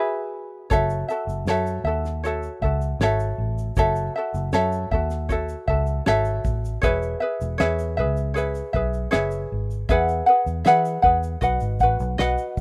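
A lightly reverberant, intimate acoustic pop excerpt with a wistful, tender mood, moving at an unhurried pace in a straight four. A light, fingerpicked ukulele sits up front and opens alone, joined at 0.7 seconds by a round, punchy, foam-muted electric bass and a cloth-damped, thuddy drum kit whose fat snare, tight kick and shaker sound dry, dark and rolled-off at the top. The harmony drifts from Eadd9 through F#m7 and C#m7/E before returning to Eadd9 and settling on B.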